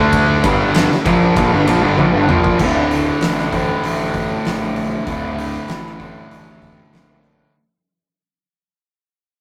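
Hypnotic and ominous, this short stoner and doom metal fragment, cut from a longer piece, sets an up-front, double-tracked fuzz guitar riff over a growly overdriven picked bass and an oversized low-tuned drum kit with a boomy kick, fat snare and dark cymbals, moving from G5 to D5 after a drum fill at 2.0 seconds before fading out in a rough, tube-saturated rehearsal-room sound with light reverb.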